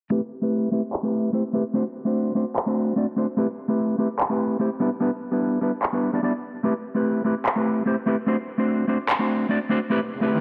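A lush hall reverb with a 1.8-second tail and a digital ambience wraps this low-pass-filtered cut from a longer future bass piece, with a filter sweep running through its whole length. The mood is bittersweet and dreamy: 147 BPM in 4/4 with a half-time feel and a light 16th-note swing, set in A dorian. A mellow, dark, clean electric guitar sits up front through a digital delay, with a fingered touch as it moves through Am9, D7 and Em7. Electronic handclaps enter at 0.9 seconds, layered, produced and tape-warm, placed forward in the mix with a low-pass filter on the snare, a small-room ambience and their own filter sweep. An electronic riser arrives at 10.0 seconds in the final moments.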